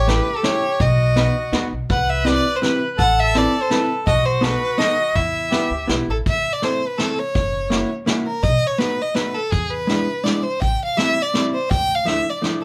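A straight 3/4 lilt at 166 BPM drives this nostalgic, bittersweet musette waltz excerpt in E minor, where a rich, smooth bowed violin sings the melody up front with vibrato, a reedy, airy accordion adds a second line until 6.2 s, a clean, compressed electric hollow-body jazz guitar picks the accompaniment close to the listener, a woody pizzicato upright bass holds the low end, and a brushed acoustic kit with a punchy kick and rolled-off top sits in a small room's moderate reverb as the chords move from A through Cmaj7 and B7 toward F#7, E7 and Dmadd9.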